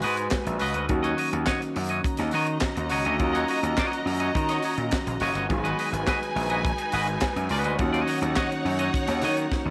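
A light studio reverb frames this glamorous, driving disco excerpt in straight 4/4, where an overdriven slap bass and a dry, tight funk kit with high-tuned snare, handclaps and hi-hat sit up front, a clean, picked electric guitar twangs over Abm7 and Ebm7 chords, a distant, lush bowed string section carries a second line, a flute-like tonewheel organ through a slow rotary speaker holds soft chords in the background, an intimate grand piano with audible action noise joins at 0.9 seconds, and a drum fill arrives at 9.5 seconds.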